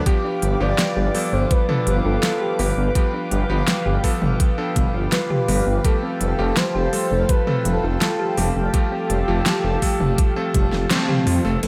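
Cinematic and nocturnal, this dreamy synthwave excerpt is soaked in reverb, with a velvety, gliding synth lead carrying the melody over a shimmering, dark pulse-width pad whose sustained chords pump under sidechain compression. A round, tine-like pluck plays arpeggios in the background and a bright, clangy electric grand piano adds filtered stabs. A knocking electronic kick and a pop kit of fat snare, crisp hats, crash and toms sit up front from the start, joined at 0.4 seconds by a thick, detuned saw bass. The kick stops at 10.7 seconds, shortly before the band hits an accent at 10.9 seconds.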